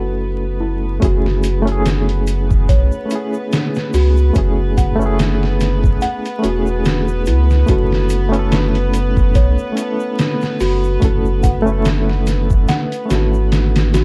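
Trip hop with a dark, cinematic mood, this excerpt opens on a filter sweep over a reedy electric piano with fast tremolo and tape echo, distant bowed strings holding sustained chords with a vintage 12-bit sampler grit, a delicate, bell-like celesta playing arpeggios through delay, and a deep, round sub bass. At 1.0 seconds a muffled, pitched-down sampler-style drum kit arrives up front with a thumpy kick and overdrive, joined by a close, dry egg shaker in the background. The production sits in a small room, with vinyl crackle.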